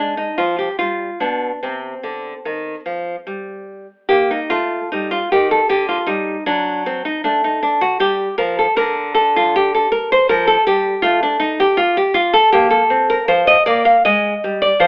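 In a triple metre with a freely stretched, rubato feel, this solemn, introspective baroque-style classical dance features a solo fingerpicked nylon-string guitar, warm and up front in light reverb, that moves through dark minor and suspended harmonies, shifting its tonal centre at 4.1 seconds and briefly dropping its chords at 11.0 seconds, all heard through a narrow, telephone-like sound in a short passage cut from a longer piece.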